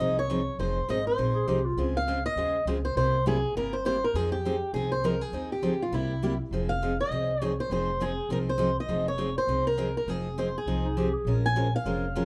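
A boxy, picked swing guitar carries a fiery, virtuosic melody over a full-bodied steel-string guitar with audible finger squeak and a woody, thumpy gut-string upright bass in this fast jazz manouche passage at 202 BPM in F minor, cut from a longer piece, where a mellow subtone clarinet with light vibrato and scooped notes slips in briefly at 1.3 and 10.8 seconds, all set in a moderate club reverb.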